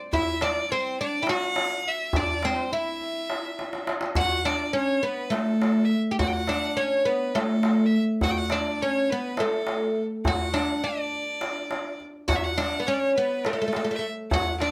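Turkish makam ensemble music in 7/8, soulful and longing, in which a woody, fretless oud carries the melody up front, an intense, bright violin with vibrato weaves a second line above it, and a deep clay-shell darbuka played with hard hands keeps time, breaking into a fill at 3.6 s before the music shifts to a new section at 4.2 s, all set in a moderate studio reverb.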